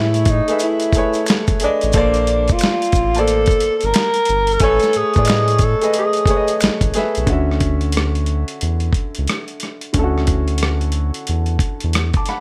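A swung, warm 90 BPM groove in 4/4 drives this sensual neo-soul R&B excerpt in D major, built on a gritty, sampler-style drum kit with a thumpy kick, medium-tuned snare, rim click and hi-hat, overdriven and compressed as if re-recorded in a small room. A round, deep analog bass with a dark sawtooth-and-sine tone sits up front beneath a clear concert grand piano that spans a broad register and carries the lush maj9 harmony, moving from Amaj9 to Bbmaj9 and back before settling on Dmaj9 at 7.3 seconds. A mellow tenor saxophone leads in a jazz style with vibrato and a soft attack, sounding distant and roomy, and plays until 6.6 seconds. Very quiet maracas and a group handclap add close, dry texture until 7.3 seconds, leaving piano, bass and drums to carry the closing stretch. Light reverb gives the whole a relaxed, intimate sheen.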